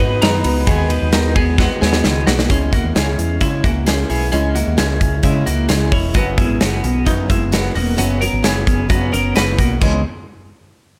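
Dry jangly indie pop at 131 BPM in C# dorian, restless and wistful, where a slightly broken-up, lo-fi electric guitar through a small old amp carries a faint melody in the background for the first 2 seconds while a bright, twangy twelve-string electric guitar spins clean arpeggios with tremolo and digital delay over a full-bodied jumbo acoustic guitar, a dark, round dub bass and a punchy, up-front rock kit with bright cymbals whose fill at 1.6 seconds leads the shift from G#m7 to C#m at 2.5 seconds in this fragment cut from a longer piece.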